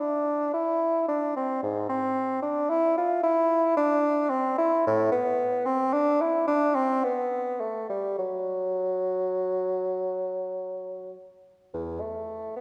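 A classical, baroque-style fantasia for unaccompanied bassoon in E minor, this flowing, grave excerpt moves in a rubato 3/4 at roughly 50-57 BPM. The warm solo bassoon sits up front with light vibrato, ranging from E2 to F4 across its 12.6 seconds. A lush reverb from a church or concert hall surrounds the line with a long, resonant tail.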